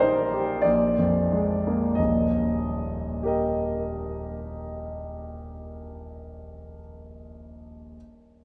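Serene and tender, this brief fragment of a romantic classical nocturne in E-flat major unfolds at a rubato 48 BPM in 3/4, with a solo concert grand piano, clear and open with a deep bass and set up front, playing throughout the eight seconds, easing its pace over the first 2 seconds as the harmony moves from Eb/Bb through Bb7 to settle on Eb, all bathed in a wet cathedral reverb that opens into a vast, echoing space.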